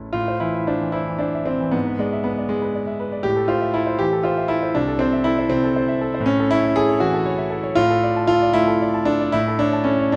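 A concert grand piano opens alone on an A minor chord, beginning a romantic character piece in 6/8 that moves with a passionate, warm mood at roughly 70-82 beats per minute, counted in dotted quarters, with a freely breathing rubato. The piano's tone is clear and smooth, with a deep bass reaching down to A1, a vintage color, and a close, up-front placement, while its upper reach stays at A5. The harmony moves from A minor through E7/G#, back to A minor and then Am/C, before brightening into A major at 6.2 s, passing through Dm/A and settling on A major again at 9.3 s. A moderate scoring-stage reverb lends the instrument a sense of space, and the overall production leans dark and warm. This short passage is taken from a longer piece and ends at 10.2 s.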